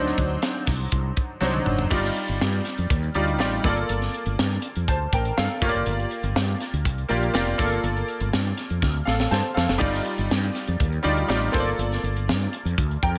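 A bright grand piano, brilliant and polished with short sustain and a touch of analog chorus, carries the accompaniment in this slick, urban slice of 1980s jazz-funk pop, cut from a longer piece and moving at 122 BPM in a straight 4/4. Beneath it, a mellow fretless electric bass sits up front with a dark, round, punchy tone, recorded direct. A tight funk drum kit enters at 0.1 seconds, its high-tuned snare, tight kick, hi-hat, crash and toms treated with gated reverb in a small room. The opening D7b9 gives way at 1.9 seconds to a longer passage cycling through Ebmaj9/G, Bbmaj7/G and Gm7, and a second drum fill arrives at 8.8 seconds. Light room reverb frames the tight, up-front mix.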